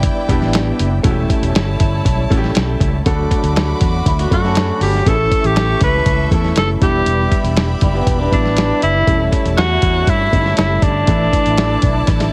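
An uptempo 1960s-style soul groove in A mixolydian opens at 120 BPM with a lo-fi, sampler-style drum kit up front, its pitched-down, muffled sound built on a thumpy kick, medium-tuned snare and hi-hat, alongside a dark, round, foam-muted electric bass. Beneath them, a gritty overdriven tonewheel organ holds sustained chords through a slow rotary speaker, very quiet in the mix, while a chamber violin section plays a smooth, reedy second line with gut-string tone and light vibrato. A clear baby grand piano joins at 0.3 s for intimate accompaniment, its action noise audible. At 4.1 s a bright, twangy guitar riff through a small old amp enters, slightly broken-up with a warbly pitch drift, and it runs until 8.9 s. At 4.3 s a breathy tenor saxophone takes the melody up front, whispered and scooped in a jazz-style subtone, trailed by tape echo. The danceable, warm-hearted passage moves through Em7, A7/E, D and A, ending on Asus4 with a drum fill at 12.1 s, all set in a small room with light reverb and a heavily compressed radio sound.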